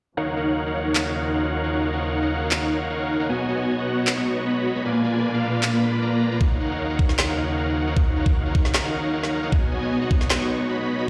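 The recording sounds big and roomy, as if played through a large sound system in a bare room, with a large studio reverb surrounding it. This is an emotional, lush future bass passage in a half-time feel, cut from a longer piece. A huge, detuned supersaw carries the riff up front, compressed and thick with a sub octave, pumping under sidechain and shaped by a low-pass filter and a dub echo. Beneath it a clear, biting symphonic string section holds sustained chords moving through Ebm9, B6 and Bb7b9, also pumping, with a filter sweep running across the whole passage. Electronic handclaps and a woody snare enter at 1.0 seconds, and a knocking, layered electronic kick joins up front at 6.4 seconds.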